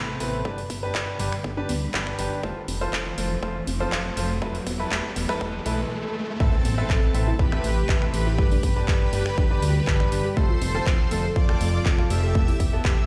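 A punchy, up-front electronic kick drives a straight 4/4 at 121 BPM alongside a big-room kit of finger snaps, handclaps and metallic, pumping hi-hats in this emotional, expansive progressive house excerpt in A minor. Underneath, a fat, detuned analog bass with tube saturation pumps against the kick, while a very quiet, morphing wavetable pad holds sustained chords over a G, F and Esus4 progression. A clear baby grand piano with audible action noise plays stabs through dub echo, and a soft, round pluck spins arpeggios in the background as a filter sweeps it through the build-up, with a riser starting at 1.2 seconds and a swell leading into the drop. At 6.4 seconds an impact lands on an Amadd9 chord, and a smooth, full-bodied supersaw enters with the melody through tape echo, joined by an airy, dreamy lead with vibrato playing a second line high above. The whole mix sits in a stone room reverb, as if played on a big sound system in a bare room.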